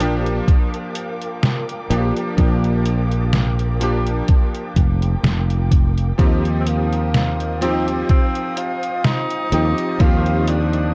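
A bright, clangy electric grand piano with ensemble chorus and tape echo opens this faded, woozy vaporwave excerpt at 63 BPM in Bb major, over veiled, muted strings in the background, a growly, punchy fretless bass with tube saturation, and a detuned 8-bit drum machine's hi-hat and snare, lightly swung on the 16ths. A thumpy, up-front electronic kick joins at 0.5 s, and the harmony later moves from Bb6 to Eb69 at 6.2 s. A mellow, distant tenor saxophone carries the melody from 6.6 s with vibrato and tape echo, all set in a dark, cassette-tinged digital ambience.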